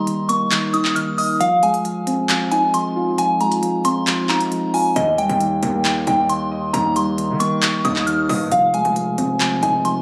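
Hip hop trap in F minor at 135 BPM with a brooding, melancholic half-time feel, where a pure, mellow FM synth bell melody with chorus floats over round, dark electric-piano-like synth keys carrying a filter sweep and their own chorus, a crisp, overdriven trap kit of handclaps and hi-hats that sounds re-recorded in a small room joins at 0.1 s, and a heavy, saturated, distorted 808-style bass arrives at 5.0 s, the whole cut from a longer piece captured on a phone in the room with club reverb and compression.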